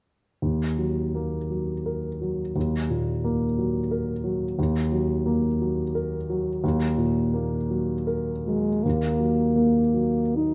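In a rubato triple metre drifting between 72 and 91 BPM, this short romantic classical fragment from a longer piece unfolds in E-flat minor with a yearning, solemn mood. A grand piano opens alone at 0.4 seconds with a dark, vintage tone, its audible action noise lending the accompaniment an intimate, close presence across a range from Eb2 to Bb4. The French horn enters at 8.5 seconds to carry the melody, its mellow, soft-attacked voice sitting up front in a narrow span from Ab3 to Eb4. Both instruments are closely captured in fine detail, set in a moderate recital hall with a 1.4-second reverb tail. The duo plays together until the fragment breaks off at 10.5 seconds.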